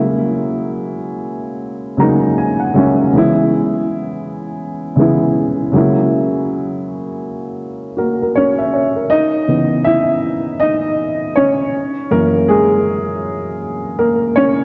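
Hazy and reflective, this hip hop fragment features a dark, woody upright piano playing alone throughout, sitting up front with a mellow, filtered tone and a gentle swing. Lush hall reverb and a cassette-tape character soak the mix in a dreamy wash, while the chords move between F#9 and C#m7. A brief piano fill arrives at 1.6 seconds, and from 9.1 seconds the piano takes a solo through to the end.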